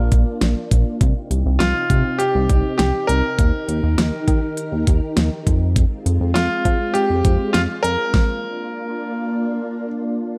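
A bright baby grand piano carries the melody over a chorused synth bass and silky, dark string-machine chords with slow-attack swells and ensemble chorus, as a produced electronic pop drum kit plays along with a knocking kick, fat snare and crisp hats in this cool, driving synth-pop excerpt. The glossy, nasal bass and the drums sit up front alongside the intimate, polished piano, whose action noise is audible, all within a dark production and light reverb. The bass drops out at 8.0 seconds and the drums at 8.3, leaving piano and strings to carry the stop, the piano ending at 9.9 seconds and the strings at 10.4.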